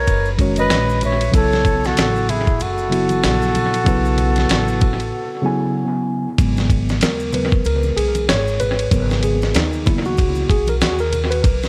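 A breathy, whispered flugelhorn opens this smoky, cool jazz-hop cut at 95 BPM in G# minor, carrying the melody with scooped notes and light vibrato, while a crisp, chiffy flute plays a second line and a woody, growly upright bass anchors the G#m11 and B9sus4 harmony. A gritty, compressed sampler-style drum kit sits up front with a thumpy kick and fat snare, swung sixteenths and touches of analog delay, joined by very quiet maracas and congas and a worn, slightly out-of-tune tine electric piano. During a break starting at 5.1 seconds, the flugelhorn and flute drop out, and the electric piano takes a solo from 6.4 seconds in an echo-heavy mix with small-room ambience.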